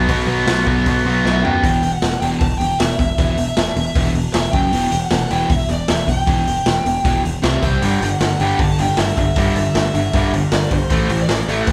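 A raw garage drum kit, punchy and gritty with a pumping small-room sound, drives this angry, urgent punk rock excerpt alongside a growling overdriven bass and a dark semi-hollow guitar riff, while a bright, tight distorted guitar plays at the start and returns at 7.8 seconds and a bluesy lead guitar enters at 1.3 seconds during a drum fill, the band playing live in one room with moderate large studio reverb.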